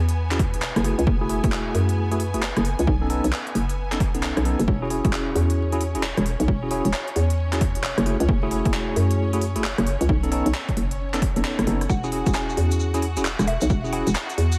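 A soulful, bouncy two-step UK garage excerpt at 133 BPM in E major, swung on the sixteenths, where a hollow, up-front FM bass knocks beneath an overdriven, punchy electronic kick and a crisp garage kit of handclaps, hi-hat and rim click, while a tine electric piano stabs through gritty 12-bit sampling, low-pass filtering, dub echo and a filter sweep over chords like Eadd9, F#m9 and B9, a distant, lush violin section sustains with sidechain pumping, and from 11.9 s a woody, mallet-like synth pluck and a grainy shekere sit in the background of an echo-heavy mix dusted with vinyl crackle.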